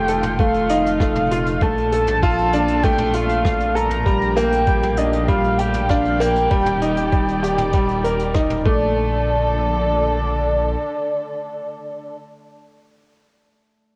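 Piano and strings electronica, luminous and tender in a straight 4/4, where a clear, woody upright piano riff sits up front through analog delay beside a velvety synth lead with chorus and tremolo, over distant, lush bowed strings and a deep, detuned saw bass that both pump with the sidechain, while a thumpy, muffled electronic kick and a brushed jazz kit of hi-hat, rim click and toms stop by 8.8 seconds, all wrapped in moderate spring reverb and the warm character of a home cassette recording cut from a longer piece.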